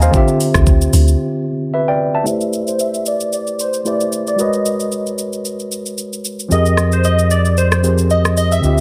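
Amapiano at 113 BPM with a deep, late-night mood, this excerpt opens on a worn, slightly out-of-tune tine electric piano with light overdrive over a Dm11 chord and an electronic drum kit of knocking kick, metallic hats, rim click and shaker, while a round, dark log drum bass sounds only until 1.2 s, before a glassy, crystalline wavetable pluck with chorus, delay and a filter sweep carries the melody from 2.3 s over Am11, G#m11 and Fm11 chords, and a punchy, amped fingered electric bass joins at 6.5 s in a lightly reverberant room.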